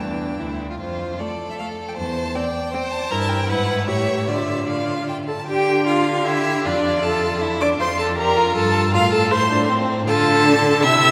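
In a triple metre with a flexible, rubato feel, this quick, cheerful and spirited classical-period string quartet excerpt sets a focused, somewhat distant first violin carrying the melody over a smooth, even second violin line, a warm viola accompaniment sitting a touch louder in the blend, and a clear, up-front cello bass, all bowed with vibrato and bathed in the long, wet reverb of a cathedral-like hall as the music turns toward a minor key around 3.1 seconds.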